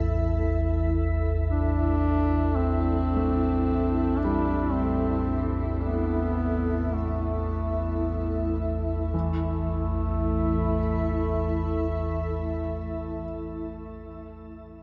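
This dark ambient drone piece, cut from a longer work, feels dark and unsettling as it moves slowly in a straight four-beat pulse. A deep, rumbling drone built from triangle and sawtooth tones sits up front in the low register, thickened by a lush chorus. Above it, a granular cloud pad holds blurred, evolving sustained chords with slow attacks and long releases, trailing into shimmer reverb. At 1.5 seconds a smooth, folk-style duduk takes a solo melody in its low range, carried by shimmer and delay. From 3.2 seconds a somber grand piano plays intimate arpeggios in the background, its action noise audible, before the music shifts into a new section at 9.1 seconds, all set within a vast, echoing cathedral space with a cassette-tape character.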